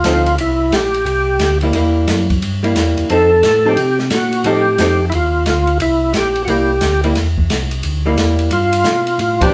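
A roomy, reverberant mix places this short soul jazz organ trio cut a little back in the space, giving it a soulful, greasy mood at a brisk 177 BPM with a swung 4/4 feel in C mixolydian. Up front, a thick, percussive tonewheel organ carries the melody, its key click and third-harmonic percussion biting through light overdrive, chorus vibrato and a slow rotary speaker. Underneath, a second, mellower organ supplies a round, dark bass line, also lightly driven and turning on a slow rotary with chorus vibrato. A clean, compressed hollow-body archtop guitar, picked and somewhat shadowy in tone, comps behind the organs, while an airy acoustic drum kit keeps time on hi-hat, ride, snare and a boomy kick, its cymbals on the darker side. The harmony moves through a bluesy C7, F7 and G7 progression, and the band closes the passage with a shared accent at 9.4 seconds.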